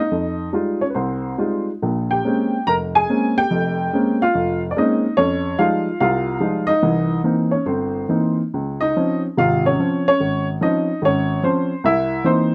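This solo jazz recording is a short piece cut from a longer performance, featuring a lone upright piano with a cool, swinging mood. The piano carries everything from 0.0 to 12.5 seconds, ranging from a deep F1 up to Bb5 and sitting up front in the sound. Its tone is woody and natural, and the playing swings its eighth notes while stretching the time with a loose, rubato feel. The harmony moves through rich minor and altered colours: Fm9 and Bbm9, back to Fm9, then C7#9, a Dbmaj7, and C7#9 again near the close. Close, detailed microphones and a light touch of reverb give the instrument an intimate, clear presence.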